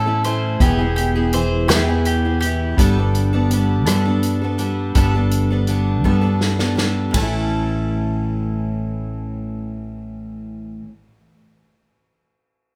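This folk rock and heartland rock excerpt moves at a slow 55 BPM in a straight 6/8, with a nostalgic, open-road mood, in A mixolydian and tuned slightly below standard pitch. A bowl-back mandolin opens with a solo in its upper register, its picked double strings ringing bright before it drops out at 3.8 seconds. Beneath it, a full-bodied jumbo steel-string acoustic guitar plays a picked accompaniment up front, and a mellow, dark, clean electric guitar plays a compressed, fingered riff. A growly, direct fingered electric bass sits up front, and a natural country drum kit in a studio room adds a punchy kick, medium-tuned snare, hi-hat, ride cymbal and rim clicks. The harmony moves from A through E to Gadd9 before returning to A, and a drum fill begins at 6.0 seconds, with the drums ending at 7.3 seconds while the guitars and bass carry on under light reverb.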